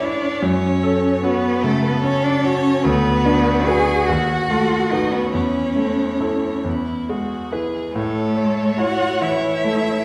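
Serene and warm, this slow romantic movement for piano quartet drifts in a rubato 6/8 around 45-50 BPM in A major, a short passage cut from a longer piece. A clear, focused violin carries the melody with vibrato from a distance, while a second violin with a smooth top and a rich, expressive cello with soft attacks and portamento carry the second lines. Up front, the concert grand gives smooth, vintage-toned accompaniment with deep bass, and the whole ensemble is heard from further back in a wet recital hall as the harmony moves from F#m through B7/D# to settle on A at 8.0 seconds.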